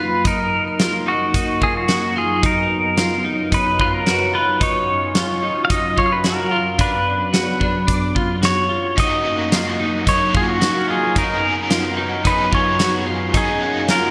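Blissful and dreamy, this dream pop passage floats on a swirling, detuned phased analog pad while a twangy pedal steel guitar carries the melody up front with slide, volume swells and delay, over dark picked arpeggios from a clean electric guitar. A huge arena drum kit with a fat snare, punchy kick, hi-hat and tambourine drives from 0.3 seconds, a ringing metallic vibraphone glints in the background, and a biting, double-tracked overdriven guitar with tremolo joins at 9.0 seconds. The bright 1980s-style digital production bathes it all in a lush hall reverb, and the chords move between F#6, C#7sus4/F#, Bm/F# and D#m7/F#.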